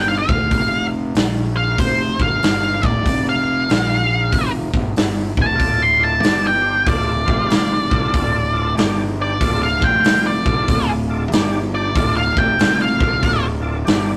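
Brooding and smoky, this swung blues rock and southern rock fragment features a dark octave-fuzz lead guitar soloing up front over a growly, overdriven fingered bass and a punchy big-room drum kit, while a gritty overdriven tonewheel organ with key click and slow rotary speaker enters at 5.6 seconds with thick sustained chords, all captured in a rough rehearsal-room sound with tube saturation and light reverb.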